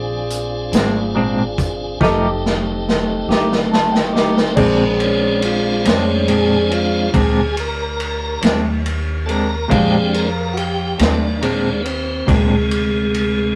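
In a straight 12/8 lilt, this rollicking, gritty slow blues, cut from a longer piece and captured in a rough rehearsal room, pairs a saturated vintage drum kit, up front with dark cymbals and a tight kick, with a woody pizzicato upright bass, a clean picked electric guitar with tremolo, and a boxy concert grand in the background, while a piping tonewheel organ with key click and a slow rotary speaker holds chords from the start and, after a drum fill beginning at 2.0 s and a piano fill, takes a solo at 4.6 s.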